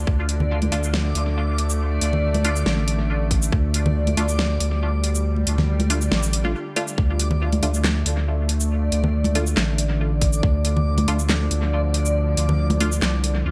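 Deep dubstep in D minor at 139 BPM with a half-time feel, this cavernous, meditative excerpt rests on a thick, saturated sub bass and a tense, string-like bowed drone with vibrato and built-in reverb, while a reversed, granular texture hovers dreamily above, a tight layered kick lands at 0.1, 3.3, 7.0 and 10.2 seconds, a dubstep kit with a huge snare, bright hats, handclaps and shaker runs through analog delay, bright hard-handed congas sit in the background, and muted, wave-folded dub chord stabs flicker through phaser and dub echo in an echo-heavy mix.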